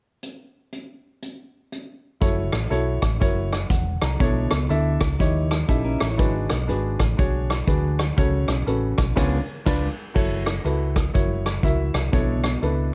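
A swung 4/4 pulse at 121 BPM opens this solemn, soulful uptempo gospel excerpt in F# minor, as a vintage brush drum kit with dark cymbals, a medium-tuned snare and a tight kick plays alone until a clear, woody upright piano and a round, punchy hollow-body fingered electric bass enter at 2.2 seconds over chords such as F#m7, Bm11 and D#7b9; a clean, compressed electric guitar adds a picked second line in the background from 5.7 to 9.9 seconds, the band hits an accent over C#7b9, and the whole sits in a dry, warm production.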